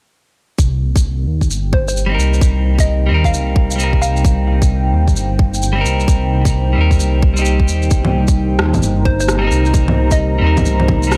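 Electronic shaker, bongos and rim click ride a swung sixteenth-note feel over a tight, tape-warmed kick in this wistful, ghostly future garage excerpt, where a rumbling detuned saw bass and a moody, chorused dark analog pad pump under sidechain on a single Cm7 chord, a hollow, mellow square pluck drifts in the background through cassette tape and tape echo from 1.7 s, and a clean, picked electric guitar with digital delay and sidechain pumping joins at 2.1 s, set within light digital ambience.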